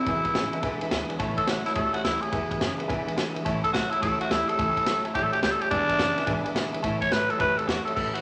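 Rollicking and rowdy, this swung rockabilly excerpt at 213 BPM in A major puts a raspy, gritty tenor saxophone up front, full of scooped notes and vibrato. Beneath it sit a jangly, detuned honky-tonk upright piano with a brief fill at 0.8 seconds, a twangy, slightly broken-up electric guitar riff, and a bright picked acoustic guitar and woody, thumpy upright bass in the background, with a punchy vintage drum kit with dark cymbals, set in a wet, large studio reverb.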